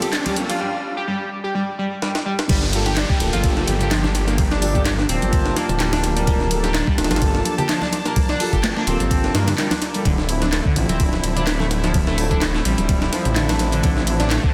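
Energetic and swaggering, this breakbeat cut opens on a short build-up, with a drum fill and a riser in the first 0.6 seconds before a break that gives way to the drop at 2.5 seconds, where a thick, menacing detuned saw bass enters up front with saturated, beating weight. Leading the mix, a compressed, sampler-style breakbeat kit brings a thumpy kick, high-tuned snare, hi-hats, ride and crash, with gritty character and studio reverb, while a tape-warm analog drum machine adds handclaps and hi-hat in the background and very quiet, bright congas struck with hard hands fill in the percussion. An overdriven synth lead plays a screaming, guitar-like riff with vibrato, lush chorus and tape echo. Behind it, a smooth, bowed string section holds sustained chords with sidechain pumping, and a soft-attack brass ensemble adds classical-style stabs roughened by vintage 12-bit sampler grit, a low-pass filter and tape echo. 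A breathy, flute-like synth lead appears briefly from 4.6 to 6.8 seconds and returns for a moment at 12.2 seconds, its tone narrowed by a telephone effect and chorus, as the harmony moves from Gm9 to Dm9 under a dense, heavily limited master with a lush hall reverb.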